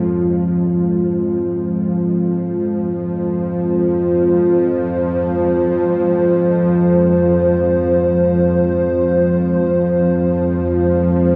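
This recording sits in a huge, wet ambient space with a reverb tail of about 7.7 seconds, and the production has a warm, shadowy cast. It is a dark ambient drone in F minor, moving in free time, with a cavernous, unsettling mood across a brief passage cut from a longer piece. A bowed-like drone holds the low register from F2 to F3. Its string-like sawtooth tone is tense and bright, edged with a noise layer and vibrato, and it sits up front with its own built-in reverb. Above it, a dark analog pad sustains chords between Ab3 and C5, a deep, moody blend of square, sawtooth and triangle waves, detuned and thickened by a sub octave and ring modulation, and treated with chorus and shimmer reverb. Both parts sound from 0.0 to 11.4 seconds with slow attacks and long releases, resting on a single F minor chord throughout.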